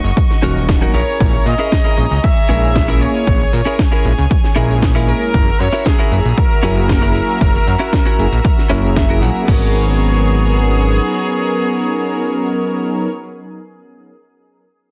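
A sleek, sensual nu-disco excerpt in G# minor at 116 BPM opens on biting, earthy chamber violin chords with sidechain pumping, a fat, detuned analog bass with a filter sweep, and an overdriven house kit of cracking snare, metallic hats, crash and tambourine, soon joined by a punchy, up-front electronic kick, a clean direct-recorded electric guitar riff with subtle chorus, round synth brass with chorus and analog delay, and a present trumpet section carrying the melody with light vibrato, until the guitar fill at 8.4 s leads into the drums stopping at 9.6 s and the bass falling away at 11.0 s, the mix squeezed into a heavily compressed radio-like sound.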